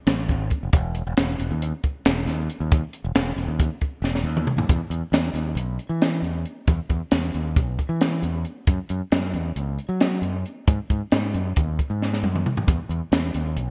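In a straight 9/8, this playful, intricate math rock and midwest emo passage, cut from a longer piece, pairs a growling fingered electric bass with a compact cocktail drum kit, both up front throughout. The bass is bright, overdriven, direct and amped, while the small-room kit sounds dark and smooth, with a high-tuned snare, a punchy kick, a rolled-off top and gated reverb, breaking into drum fills at 4.0 and 12.0 seconds. A moderate plate reverb and 1980s-style digital production frame the shift into a new section at 4.7 seconds.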